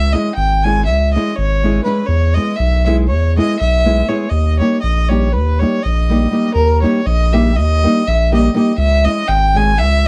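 In a straight 9/8 at 242 BPM counted in eighths, this fiery, virtuosic Balkan wedding-band excerpt in Eb phrygian dominant sets a nasal, earthy bowed violin melody with light vibrato over a deep, saturated sine sub bass with a fast attack and a fingerpicked nylon-string guitar accompaniment, all under light reverb in a dark production that carries lossy compression artefacts.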